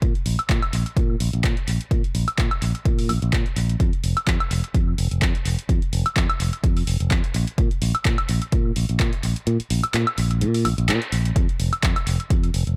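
Filtered disco house at 127 BPM in 4/4, this feel-good, funky excerpt rides a 55% swing on the sixteenths and is tuned to A4 = 435 Hz. An overdriven, punchy electronic kick sits up front beside a direct, fingered electric bass that moves between F1 and Bb2 through a low-pass filter with sidechain pumping, while a tape-warm analog drum machine, re-recorded in a small room, adds handclaps, hi-hat and woodblock that pump with sidechain compression and trail analog delay. The mix is dry of reverb but heavy with echo, and the kick drops out from 9.5 to 11.4 seconds, with a band accent landing at 10.9 seconds.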